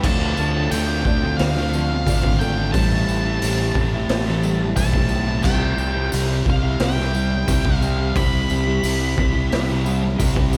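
This shoegaze and dream pop excerpt moves at 88 BPM in a straight 4/4, dreamy and hazy, cycling through Dm7, Am7 and Cmaj7 in C major. Up front, a punchy, bright fuzz bass with overdrive anchors the low end, while a raw garage drum kit with a boomy kick, medium-tuned snare, crash, hi-hat and a gritty, saturated, rolled-off top drives the groove alongside a jingly tambourine tucked in the background. Behind them, a dark, distorted fuzz guitar plays a riff drenched in lush chorus, and a slightly broken-up, lo-fi electric guitar through a small old amp adds its own riff with reverse reverb. A very quiet fingerpicked twelve-string acoustic guitar shimmers with octave-doubled arpeggios on fresh strings. From 0.1 seconds, an octave-fuzz lead guitar carries a high melody through distortion and diffuse ambient delay, and the whole mix is soaked in a church-like reverb that blurs the parts into a thick haze.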